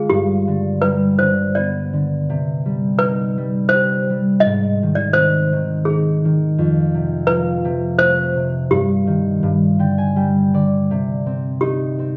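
A clanky, bell-like toy piano, slightly out of tune, carries the melody of this gentle, wistful children's lullaby at 83 BPM in 3/4, over a ringing, thumb-plucked concert harp that plays the accompaniment through a minor-tinged progression and adds a fill from 9.4 to 10.9 seconds, with both up front in a dark production bathed in the reverb of a recital hall, in a short passage cut from a longer piece.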